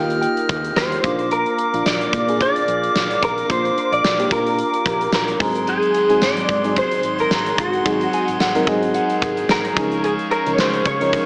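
A clean electric guitar carries the melody from 0.8 seconds, sitting up front with a compressed, direct-recorded tone softened by ensemble chorus and tape echo. This short cut from a longer 1980s-style pop piece feels nostalgic and uplifting, set in 4/4 with a light swing on the sixteenths. Underneath, a lush, dreamy FM electric piano layered with a soft pad supplies chorused accompaniment, while a distant, classical-style woodwind section holds mellow sustained chords. A gated drum kit with a punchy kick, medium-tuned snare, hi-hat and tambourine drives the groove with airy gated reverb, and a dark, round, foam-muted fingered bass sits low in the mix. A gentle, pure synth bell adds a brief second line with chorus, phaser and tape echo, returning at 8.1 seconds, and from 5.7 seconds a bright, overdriven, double-tracked stack guitar joins in the background with analog chorus. The whole piece sits in a moderate hall reverb with a small-speaker character.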